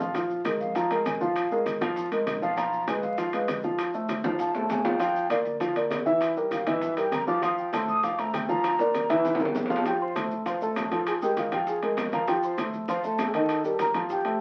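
Sophisticated and lively, this fragment of Afro-Cuban jazz in 4/4 comes across like a very old 78 rpm record, with vinyl crackle and a wet small room reverb around it. A dark, mellow baby grand piano sits up front as accompaniment, while a woody, thumpy upright bass with gut strings plays pizzicato in the background. The percussion bed mixes ringing, metal-shelled timbales with a vintage, band-limited sound, round low-tuned bongos played with soft hands at a very low level, thick-skinned congas further back, and grainy maracas close but in the background. A breathy concert flute with vibrato, a crisp attack and rolled-off highs takes an expressive solo through the opening, with drum fills at 4.2 and 8.6 seconds. At 9.7 seconds a bell-like, delicate celesta with soft felt hammers enters with the melody as the flute continues beneath it and the harmony settles onto F and moves toward F9.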